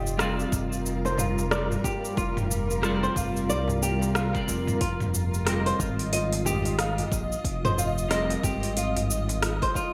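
A 16th-note swing at 91 BPM in 4/4 drives this hypnotic organic downtempo excerpt in F dorian, where an overdriven electronic kick and an up-front deep house kit of metallic hats, cabasa, rim click and toms with gated reverb sit over a nasal, sidechain-pumped synth bass, while a fingerpicked flamenco guitar arpeggiates through low-pass filtering and digital delay, a dark clean electric guitar adds chorused, pumping accompaniment, a very quiet crisp darbuka enters at 0.4 s, and a cloudy, detuned granular pad holds Gm7/F before moving to Fm7 at 4.8 s, all within a bright 1980s-style digital production and plate reverb.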